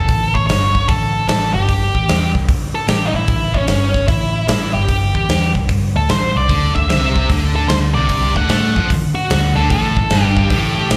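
Blues rock in a power-trio vein with a southern rock edge, this driving, raunchy passage is cut from a longer piece and moves at 150 BPM in 4/4 with a swung eighth-note feel. An octave-fuzz lead guitar carries the melody from the start, its dark, distorted tone sitting up front with slapback echo. Beneath it, a vintage muted fingered electric bass gives a round, punchy, foam-muted low end through an amp, while a huge arena drum kit of hi-hat, punchy kick and medium-tuned snare sits forward with a hall-like acoustic character. At 6.5 seconds a thick, bright, double-tracked fuzz guitar joins with a picked riff, landing as the harmony shifts from A7 to D7 before settling on A5 at 9.7 seconds. The whole performance sounds like a live gig heard through a venue's PA, with small-room ambience and club reverb around it.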